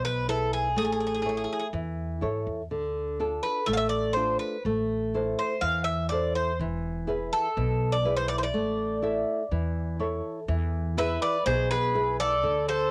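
A straight 4/4 pulse drives this tense, cut-from-a-longer-piece Greek folk tune for bouzouki band, with the metallic, double-strung Greek bouzouki carrying the melody up front through a cassette-tape tint, a woody, fingerpicked classical nylon-string guitar on old strings accompanying, also up front, a growly pizzicato upright bass anchoring the bottom, and a round, picked mandolin adding a second line from 11.0 seconds, all set in moderate studio reverb on a home cassette recording as the chords move through E, A, Dm and Am.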